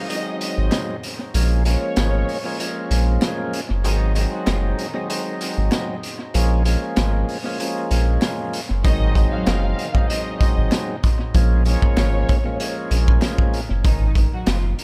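An echo-heavy, small-room mix frames this dark, tough boom-bap hip-hop cut, moving at 96 BPM in 4/4 with a light 16th-note swing in Bb minor. Up front, a raw garage kit with a punchy kick, medium-tuned snare, rim clicks and hi-hat sounds saturated and gritty with a rolled-off top, while a soft dub sub bass sits deep and round beneath it from 0.6 seconds. An overdriven tonewheel organ with audible key click and a slow rotary speaker carries the accompaniment, thick and full under cassette-tape colour and tape echo. In the background, a muted, con sordino string section plays veiled stabs throughout, and a lush, vibrato-laden symphonic violin section carries the melody briefly at the start and returns at 8.8 seconds. Barely audible finger snaps add a human touch as the harmony moves between Ab7 and Bbm7, ending on Ab5 at 13.8 seconds in what is cut from a longer piece.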